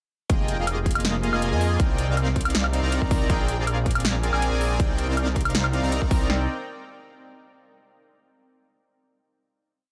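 Future bass at 160 BPM in a half-time feel, this short, emotional and bittersweet C minor piece opens its drop at 0.3 seconds with a smooth, detuned supersaw playing syncopated, open-voiced chord stabs that throb in tempo through tape echo and sidechain pumping over a thick, saturated, chorused saw bass that follows the chord rhythm through Fm11, Cm9 and Bb13, while a punchy, layered dance kit delivers a half-time kick and snare beneath metallic hi-hat rolls and a high woodblock, all set in a digital ambience before a final chord rings out from 6.3 seconds.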